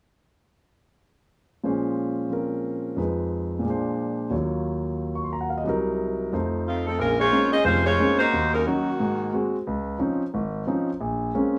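A warm, tight saxophone section carries the melody from 6.7 to 9.5 seconds, its light vibrato and smooth top sitting up front with a touch of plate reverb. Beneath it, a clear concert grand piano provides accompaniment from 1.6 to 11.6 seconds, intimate and polished, with deep bass, long sustain and audible action noise. This brassy, dramatic jazz excerpt moves at a brisk 179 BPM in 4/4 with a swung eighth-note feel, set in B-flat minor. The harmony runs from Bbm7 through minor seventh-flat-five and dominant chords, arriving at a lush Dbmaj9 before settling on Bbm9. The recording captures a small room with moderate club reverb, giving the cut from a longer piece a close, lively presence.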